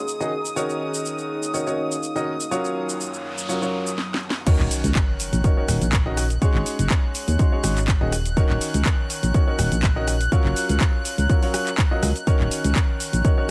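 Swung sixteenths in 4/4 drive this energetic, bittersweet piano house passage. An overdriven house drum kit of cracking snare, bright hats, handclaps, rim click, shaker and crash sits under a woody, intimate upright piano riff with audible action noise and dub echo, a close, reedy violin section holding sustained chords, and a deep, moody detuned pad with chorus that stops at 4.0 s, while an electronic noise sweep and sub drop lead into the drop. At 4.5 s a punchy, overdriven kick and a round, dark FM bass arrive up front, with sidechain pumping on the bass, piano and strings, all in a light digital reverb.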